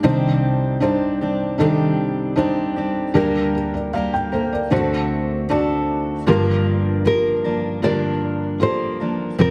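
Longing and melancholic, this excerpt of a 77 BPM pop ballad in G minor pairs a dark, thick-felt muted upright piano, its action noise audible up front, with full-bodied fingerpicked steel-string guitar arpeggios marked by finger squeak, moving through Cmadd9, Gm/D, D7 and Gm7 in a wet scoring-stage reverb until a small, thumb-plucked nylon-string guitar melody enters at 7.1 s.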